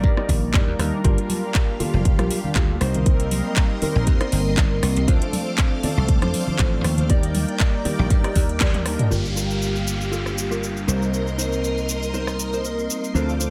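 Nu-disco at 119 BPM in G minor with a gentle 16th-note swing, this sensual, sleek excerpt rides a punchy, up-front electronic kick and a house kit of metallic hats, handclaps, cabasa, rim clicks and toms, while soft-handed congas sit in the background until 8.0 seconds and a bright, foam-muted thumbed slap bass pumps beneath mellow, brassy sawtooth synth brass with chorus. A dark, clean fingered electric guitar riff with dub echo and subtle chorus threads through, and from 1.0 seconds a lush vintage string machine adds phased, pumping sustained chords over Gm7, Cm7, Dm7 and Ebmaj7. A drum fill and band accent arrive at 8.6 seconds, the kick drops out at 8.7 seconds, and from 9.1 seconds the guitar and polysynth sweep through filters over a downlifter, with a guitar fill near the close.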